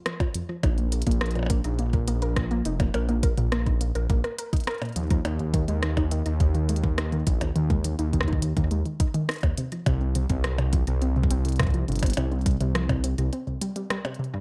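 A detuned, rumbling saw bass sits up front from 0.6 seconds, saturated and beating, in this eerie, intricate IDM excerpt at 104 BPM in a straight 4/4. A warbling, lo-fi pluck with chorus and digital delay spins arpeggios that touch on a Bbsus4 chord, while a glitchy kit of clicky hi-hats, percussion blips and rim clicks, tape-warm and treated with studio reverb and delay, plays over a deep electronic kick re-recorded in a small room. The production is dark with a digital ambience, and the piece closes with a short break from 13.3 seconds.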